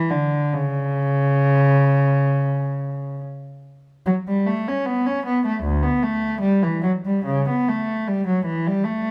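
Radiant and dance-like, this short excerpt from a baroque-style suite movement for unaccompanied cello moves at 66-78 BPM in 4/4 with a supple rubato feel. A single bowed cello carries the whole 9.1 seconds alone, ranging from D2 to C#4 in period style. Its gut-string tone is nasal and reedy, sitting up front yet with a slightly distant quality. The passage falls into two statements of the same opening material, the second beginning at 4.1 seconds. Close, detailed microphones capture the instrument inside a recital hall whose wet reverb lingers for about 1.7 seconds.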